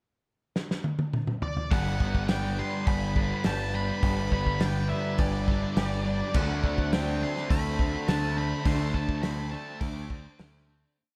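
Wistful and dreamy, this short shoegaze and dream pop piece in D mixolydian moves at 104 BPM, as a loose indie drum kit with a fat snare and dark cymbals plays a fill from 0.6 seconds and an octave-fuzz lead motif slips in at 1.4 seconds before a growling overdriven bass, a thick fuzz guitar with whammy-bar dips, crunchy ringing and semi-hollow swelling guitars, and a twangy arpeggiated guitar enter on G at 1.7 seconds, joined by a warbling, lo-fi pad, all soaked in plate reverb until a fade-out from 8.7 seconds.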